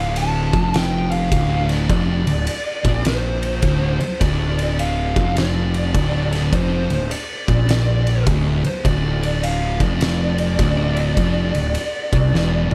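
The production is dark and warm, with little reverb, giving this short cut from a longer stoner and doom metal piece a heavy, ominous weight. Two thick fuzz guitars sit in the background, grinding out a low, distorted riff over a single minor chord, while a growly, overdriven fuzz bass sits up front beneath them. An oversized, low-tuned acoustic drum kit enters at 0.2 seconds, saturated and gritty, with a boomy kick, fat snare, toms and ride cymbal captured in a bright stone room that pumps around the hits. Above the riff, a compressed fuzz lead guitar carries a picked melody in a higher register, trailed by tape echo. The swung 4/4 groove closes with a drum fill at 12.3 seconds.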